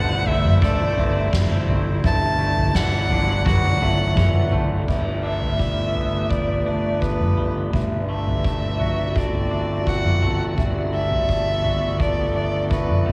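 A fuzzy, overdriven fingered bass sits up front on a low G, anchoring this hopeful, cinematic post-rock passage in G major at 84 BPM, while a dark, smooth bowed violin carries the melody through analog delay and a soft-mallet drum kit with a boomy kick and fat snare joins at 0.3 s. A twangy, clean electric guitar and a mellow, ringing vibraphone play delayed arpeggios, and an evolving, warbling wavetable pad with chorus holds sustained chords in the background over a progression moving from Am/G and Dadd9/G to Gadd9, D7/G and Bm7/G. The dreamy mix is soaked in plate reverb with a small-room ambience, and this cut from a longer piece shifts into a new section at 4.9 s.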